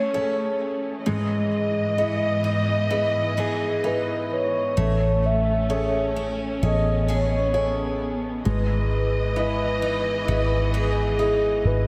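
At a slow 65 BPM in E major, this tender, heartfelt pop excerpt drifts through a dreamy mix soaked in a lush hall reverb, its harmony rocking between Amaj7 and Emaj7/G#. A mellow, horn-like synth lead carries the melody with a soft attack, sustained round tone, vibrato and a gentle chorus shimmer. Beneath it, a concert grand piano with audible action noise and long sustain plays accompaniment through an analog chorus, while a studio string section holds smooth, expressive bowed chords with vibrato and portamento. A picked steel-string acoustic guitar adds full-bodied arpeggios, finger squeak and all, trailed by a diffuse ambient delay. At 4.8 seconds a dark, foam-muted fingered electric bass enters up front, grounding the texture with a round, amped low end.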